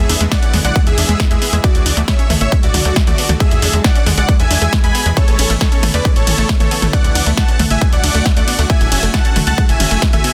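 A straight pulse drives this uplifting trance excerpt, with a layered, up-front electronic kick entering at 0.3 seconds beneath a punchy analog drum machine playing hi-hat, ride cymbal, toms and a tape-warm snare. A tight, driving sequencer bass, sawtooth and square edged with wave-folded saturation and a moving notch, pumps through sidechain compression. Over it soars a huge, thick supersaw melody, detuned and vibrato-laden, carrying vintage 12-bit sampler grit and dub echo. Beneath the lead, a lush, warbling unison pluck spins arpeggios with a filter sweep and its own echo. Far in the background, a shimmering, ethereal pad with an octave-up granular sparkle, chorus and built-in reverb sustains the chords as they move from E through D and Aadd9 to F#madd9. The mix is otherwise dry, dense and heavily limited, giving the soaring, hands-in-the-air mood a loud, modern punch.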